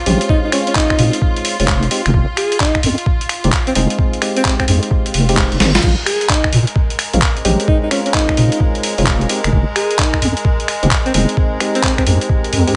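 A dry, dark mix with a rolled-off top end opens this moody, soulful two-step garage excerpt in Bb dorian, swinging at 130 BPM over Bbm9 and Fm9 chords. A deep, wobbling square-and-sine bass with chorus and sidechain pumping sits up front beside a gritty, pitched-down sampler kit of thumpy electronic kick, medium-tuned snare, hi-hat, handclaps, finger snaps and crash, while hollow, nasal organ stabs and a rich, reedy chamber violin section holding pumping sustained chords fill the middle. A breathy, close-miked alto saxophone carries a jazz-style melody with vibrato and delay, and a very quiet reverse cymbal leads into a drum fill at 5.6 seconds.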